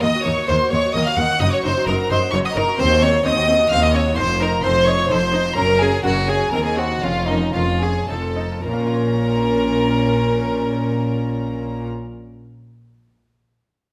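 Stormy and driving, this baroque-style concerto excerpt in Bb minor and 3/4 at 103-130 BPM sets a close, reedy solo violin up front over gut-string period-style violin sections carrying the melody and a background second line, a dark, distant viola section and delicate fingerpicked lute in accompaniment, and rich cello and double bass sections on the bass, all in a recital-hall reverb, slowing from 4.9 to 8.7 seconds before settling on Bbm.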